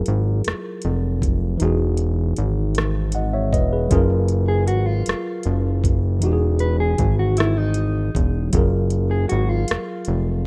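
Slow six-eight R&B in F# major at 52 BPM, intimate and sensual, where a worn, slightly out-of-tune tine electric piano alternates between F#maj9 and Emaj9 chords over a fat, saturated, detuned analog bass sitting up front with a filter pluck and fast attack, while a produced electronic drum kit with a knocking kick, metallic hats and rim clicks keeps time, a dark, clean, fingered electric guitar washed in lush chorus joins at 4.5 seconds, and the whole short cut from a longer piece carries the digital ambience of a rough home demo mix.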